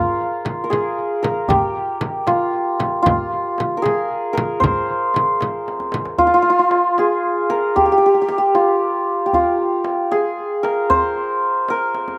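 Soulful and melancholic, this Persian modal ensemble piece moves at 77 BPM in a straight 6/8. A shimmering, ringing santur carries the melody up front, its hammered acoustic tone touched by a slapback echo, while a soft-handed tombak sits deep in the background. A large, close frame drum struck with hard hands joins at 0.5 seconds and drops out at 6.1 seconds as a drum fill closes the first pass, and the same section is then played again in this dry outdoor recording.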